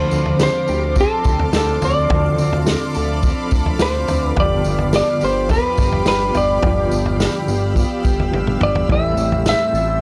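A clean lap steel guitar carries the melody from the opening over a floating, dreamy dream pop groove at 106 BPM in straight 4/4, its dark, compressed slide tone trailed by tape echo and placed up front. Two mellow electric guitars sit in the background: one plays accompaniment through tremolo and ensemble chorus, while the other plays arpeggios colored by analog chorus and tape echo. A shimmering ambient pad holds ethereal, bright sustained chords with an octave-up shimmer, granular texture, chorus, phaser and its own reverb, and a fat, detuned sawtooth bass lays down a thick, saturated low end. A vintage acoustic kit with tight kick, medium-tuned snare, tambourine and toms comes in at 0.1 s, its rolled-off top sitting forward in the mix, and a drum fill arrives at 8.3 s. The chords move from Dm7 to G7 to Am7, and this short cut from a longer piece has a gritty, cassette-tinged character in a small room.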